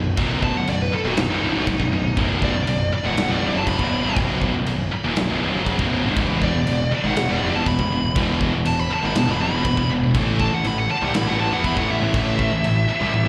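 Relentless and dark, this heavy metal passage drives at 120 BPM in a straight 4/4, rooted in B phrygian dominant and cut from a longer piece. A high-gain lead guitar with a dark, distorted tone and slapback echo carries the melody from 0.4 seconds, soloing over the whole stretch. Beneath it, three picked guitars grind out the riff: a heavy high-gain part and a scooped high-gain part, both bright and set back in the mix with slapback echo, plus a very quiet double-tracked distorted guitar. A growly, fuzz-laden picked bass with overdrive anchors the low end, while a big rock drum kit enters at 0.2 seconds with a punchy kick, medium-tuned snare, toms and crash cymbal, its rolled-off top keeping it smooth in the background. The harmony moves from B to E5 and then A5, and the whole performance sounds like a live gig heard through a venue's PA, with small room ambience and recital hall reverb.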